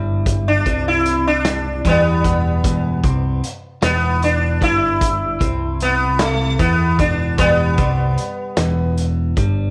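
A buzzing, shimmering sitar carries the melody up front, its plectrum-plucked lines ringing with sympathetic strings and doubled by a slapback echo until it drops away at 8.9 seconds. This trippy, hypnotic piece of psychedelic rock sits in E minor at a slow 50 BPM in 6/8, with a straight feel, and holds on a single E minor chord throughout this cut from a longer piece. Beneath the sitar, a bright, twangy twelve-string electric guitar plays a clean, compressed low riff through a phaser. A picked electric bass adds a round, amped low end. A vintage acoustic drum kit enters at 0.3 seconds with hi-hat, a medium-tuned snare and a punchy kick, its rolled-off top and pumping small-room sound giving the groove a dusky, retro weight, while light reverb lends the whole mix a modest sense of space.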